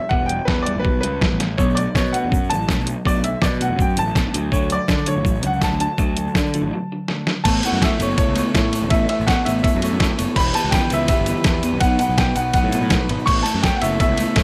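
A light reverb surrounds this jangly, carefree indie rock excerpt, with a detuned 8-bit drum machine sitting up front: a thumpy kick, a medium-tuned snare, hi-hat, ride and crash, all carrying a tape-warm, sampler-style grit. A bright upright piano carries the melody, its brilliant, woody tone so intimate that the action noise of the keys can be heard. Two electric guitars play riffs in the background, one slightly broken-up and compressed through a small old amp, the other dark, clean and fingered with a subtle chorus. Underneath, a picked electric bass pushes a punchy, overdriven fuzz tone, and a grainy tube shaker joins quietly at 1.6 seconds. The opening passage moves through Em, Bm7 and D, then a break at 6.7 seconds and a drum fill lead into a second passage at 7.5 seconds that turns to Aadd9, Em and B before the piece is cut off.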